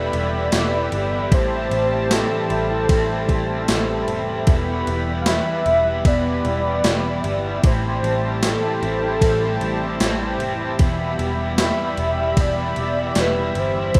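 Dream pop in a blissful, dreamy mood, moving at a steady 76 BPM in 4/4 and cycling between Em and Am7 across this short cut from a longer piece. A velvety, detuned synth lead carries the melody with chorus, delay and vibrato, floating above a soft-attack analog pad that holds sustained chords with its own chorus and tremolo. Two electric guitars share the middle: one crunchy and overdriven, shimmering through harmonic tremolo and lush chorus, the other dark and slightly broken-up, playing fingered arpeggios in the background through ensemble chorus and delay. A round, foam-muted picked bass anchors the low end. Up front, a gated 80s drum machine punches with a thumpy kick, gated-reverb snare, ride cymbal and tambourine, overdriven and re-recorded in a small room, entering at 0.1 seconds. A very quiet, dry, close-miked vibraphone adds metallic ringing touches at the start, drops out at 4.8 seconds and returns at 11.9 seconds, all within a moderate reverb and a rough home-demo mix.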